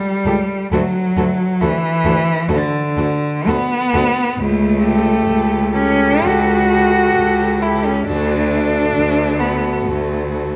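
Heard in a moderate scoring-stage reverb, this serene, lyrical classical excerpt for cello ensemble unfolds in a rubato 4/4 at 59-69 BPM in D major, with a close, rich bowed cello accompaniment marked by soft attack and portamento, a focused cello melody on A4 in the background, an up-front second cello line with a smooth top, and a clear, distant cello bass, every part sung with vibrato over harmony moving from D to A7/C# and back to D.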